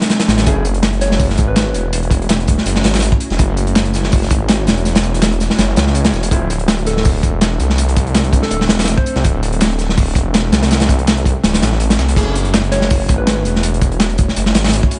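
This echo-heavy, dry mix has a dim, capped top end, giving a raw, dark slice of jungle-flavoured drum and bass cut from a longer piece. An up-front, saturated breakbeat kit drives it with crash, hi-hat, a tight kick and a medium-tuned snare in a studio room, its cymbals dark and its tone crunchy, while a very quiet, tape-warm soul sampler-style kit with hi-hat, snare and tambourine sits beneath it from 0.5 seconds, compressed and re-recorded in a large room. A thick, menacing detuned saw bass, beating and saturated with a fast attack and long sustained notes, occupies the front alongside the breaks. Very quiet concert grand piano stabs with deep bass and long sustain mark the chord changes, moving from F#m7 to Dm7 at 6.3 seconds and back to F#m7 at 12.2 seconds. In the background, a round, gentle FM synth lead with a keys-like, wave-folded tone plays brief phrases, warbling with vintage chorus and trailing dub echo.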